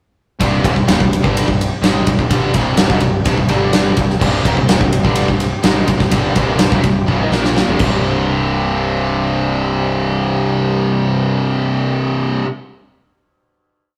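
Hard rock with a driving, aggressive feel: a bright, scooped high-gain guitar plays a power-chord riff up front, a second overdriven guitar plays its own power-chord riff further back, and a growly fuzz bass drives eighth notes that double the guitar riff. A big, punchy acoustic drum kit with a rolled-off top propels the groove until a fill from 7.1 to 8.0 seconds, after which the drums stop and the band holds a final hit to the close. Beneath it all, a very quiet, gritty tonewheel organ sustains thick chords through a slow rotary speaker, the whole captured as a rough rehearsal-room recording in a stone room.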